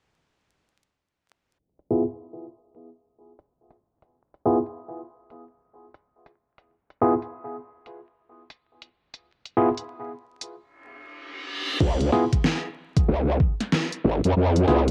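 This funky, playful glitch hop excerpt opens with an overdriven pop drum kit of crash, hi-hat and a deep snare, joined at once by clean, up-front tine electric piano stabs over a Bsus4 chord, at 94 BPM with a swung 16th-note feel. The piano pumps against a sidechain and runs through a filter sweep, cassette tape colour and analog delay, all through the first section. A break arrives at 10.5 seconds, and from 11.0 seconds a reverse cymbal effect leads into the second section. At 11.8 seconds the harmony moves to C# as a growling, aggressive, wobbling bass with formant filtering and chorus enters, while a knocking, overdriven electronic kick briefly joins the drums. The mix carries light digital reverb and a lo-fi home-cassette character with vinyl crackle and a muffled, filtered top.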